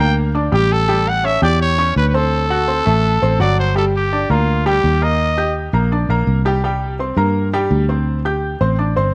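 A growling trumpet leads this fiery, danceable salsa fragment in G minor at 167 BPM, its raspy, punchy solo line carrying light vibrato and a pop-style edge before it stops at 5.6 seconds. Beneath it, a brilliant baby grand piano supplies the accompaniment, its worn, intimate tone marked by short sustain and audible action noise. A fingered electric bass sits up front with a round, foam-muted, amped sound, anchoring the low end throughout the 9.1 seconds. The harmony moves from Gm through A7 and D7, then shifts at 3.8 seconds into a second section built on Gm7, Ebmaj7 and C5 before resting on D7sus4. Light reverb and small-room ambience keep the straight 4/4 feel close and immediate, with the piano and bass playing on alone after the trumpet drops out.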